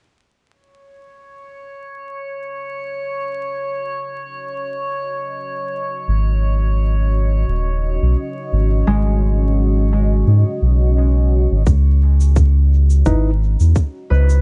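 Meditative and deep, this slow-building ambient dub excerpt opens with a glassy, drifting harmonics texture at 1.3 seconds before a dark, detuned pad fades in beneath it, both bathed in chorus and reverb over a bed of vinyl crackle. A round, up-front analog bass arrives at 6.1 seconds, followed by ringing thumb-plucked harp arpeggios carried on dub echo. At 11.7 seconds the groove sets in with a tight, tape-warm kick and a filtered, echoing cabasa, joined briefly by a worn, slightly out-of-tune tine electric piano stab.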